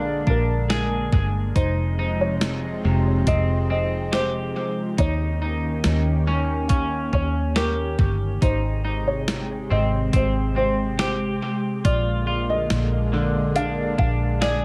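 A slow, straight 4/4 pulse at 70 BPM comes from a gated 80s digital drum machine that enters at 0.3 s, its thumpy kick, hi-hat and gated-reverb snare carrying a tape-warm, small-room character and trailing dub echo. This dreamy, ethereal dream pop excerpt sits in Ab major, cut from a longer piece, and moves through Bb7, Fm7, Eb7 and Abmaj7 before returning to Bb7. A dark, round, foam-muted fingered electric bass sits up front beneath a lush, thick unison pad of detuned sawtooth and square waves with slow attack, washed in chorus and phaser. A bright, clean semi-hollow electric guitar picks arpeggios with subtle chorus and dub echo, while a felt-muted upright piano carries the melody in a soft, intimate, mellow voice with short sustain, also echoing in dub fashion. A very quiet, bell-like celesta adds delicate, sweet touches in brief spots, and the whole mix floats in moderate spring reverb with an echo-heavy sheen.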